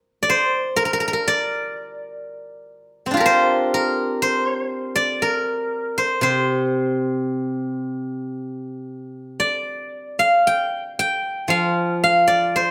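Elegant and contemplative, this short excerpt of Chinese traditional music presents a solo steel-string zither in a free, rubato flow at roughly 55-64 BPM in 4/4, tuned slightly below standard pitch. Played with fingerpicks, the zither sounds silvery and ringing, sitting up front across a range from C3 to G5, entering at 0.2 seconds and sustaining through to 12.7 seconds. Close, detailed microphones catch every nuance of the instrument, while light reverb adds a gentle sense of space.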